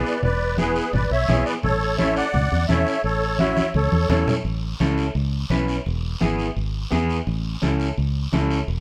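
A straight 4/4 cumbia pulse at 170 BPM drives this short, joyful, danceable fragment in A major, cut from a longer piece. Low-tuned congas ring in the background, struck with hard hands, while a raspy guiro sits distant, as if in a large room. Up front, a round, dark fingered electric bass with a foam-muted, direct and amped tone anchors the groove, and a picked, twangy electric guitar through a small old amp adds slightly broken-up accompaniment over the E7-to-A and later E-to-A changes. A reedy musette accordion, close-miked and full with its shimmering wet tuning, carries the melody in the first section and drops out at 4.4 seconds, during a drum fill that runs from 3.6 to 4.5 seconds. The dry, detailed recording places the listener close to the players.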